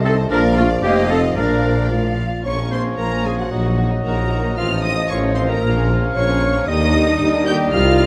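Mischievous and quirky, this whimsical film cue in Bb minor at 114 BPM in 2/4 sets a distant, lush violin section with soft attacks and portamento on the high melody over clear oboe, a roomy clarinet and airy flutes on second lines, a background second violin line, bassoon and very quiet violas in accompaniment, a hushed bed of mellow French horn chords, and a bass of woody cellos, focused, up-front double basses and tuba, all in a moderate scoring-stage reverb, with the harmony shifting from Bb to Bb minor at 2.5 seconds.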